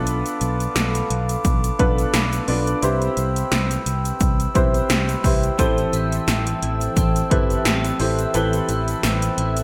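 A dark, mellow baby grand piano opens this moody, nostalgic 1980s-style pop passage, its worn tone and long sustain softened by a subtle chorus, while a glassy, ethereal glass harmonica holds slow-blooming chords above it and a round, up-front fretless bass sits underneath. Almost at once the electronic pad drums arrive, with a punchy kick, metallic hi-hats, tambourine and a snare drenched in gated reverb, all carrying a tape-warm analog character at the front of the mix. A grainy egg shaker adds a faint, bright texture far in the background, and the lightly swung groove gives the steady pulse a gentle lilt. The harmony moves through Bm7b5 and Cmaj7 before settling on Am7, and at 5.6 seconds a clean, compressed electric guitar enters with a picked riff thickened by ensemble chorus. Moderate plate reverb and bright digital production give the cut a polished period sheen.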